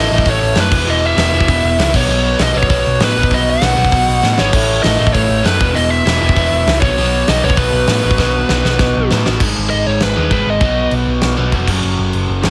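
Close and up front with little reverb, this rowdy, energetic punk rock excerpt drives along in a straight 4/4. A biting, overdriven lead guitar carries the melody until 10.9 s over a bright, double-tracked and compressed rhythm guitar riff, a round, punchy hollow-body short-scale bass with a dark, amped tone, and a big acoustic rock kit with a fat snare, tight kick and rolled-off top. After a couple of drum fills, the band drops into half time at 9.4 s, with the chords moving from G#m through B to F#5.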